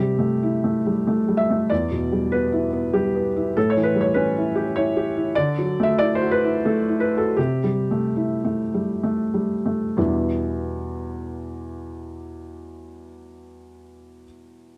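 A felt-muted upright piano plays alone from the start, its thin-felt, mellow tone sitting up front with short sustain in this intimate, wistful fragment of neoclassical minimalist piano in E minor and 3/4, tuned to A4 = 438 Hz. The rubato pace moves between 63 and 103 BPM, slowing from 4.4 to 10.0 seconds as the harmony passes through C6, Em7, A7 and Dadd9 before a new passage opens on Em7 at 10.0 seconds. Light reverb and a dark production give the piece a close, hushed feel.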